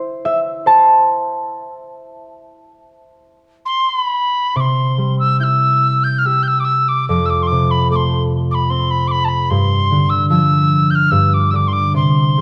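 Wistful and pastoral, this Celtic slow air drifts in 3/4 at a rubato pace of roughly 64-77 BPM, centered in C major. A concert harp opens the piece, its thumb-plucked notes warm and ringing across a range from low F2 up to A5, outlining an A minor chord before the harmony gives way to an unharmonized stretch. At 3.7 seconds a mellow tin whistle enters with the melody high in its register, its airy, tongued tone carrying a gentle vibrato and a noticeable chiff. As the music moves into its second part at 4.6 seconds, the harmony settles through C, F and a G5 chord while both instruments sit up front. A moderate recital hall reverb and a dark, warm production give the passage a mellow glow, and it is cut from a longer piece.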